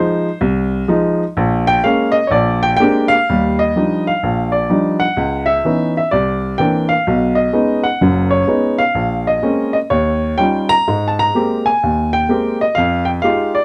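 Solo jazz piano at 127 BPM in 4/4, with a swung, rubato feel and a sophisticated, relaxed mood, cut from a longer piece. A warm, natural-sounding baby grand with short sustain sits up front, close and detailed in light reverb, spanning F#1 to Bb5. It moves through rich extended chords such as Fm7, Ebmaj9, Dbm9, B69 and Abmaj9 across its 13.6 seconds, with a new passage opening at 3.3 seconds.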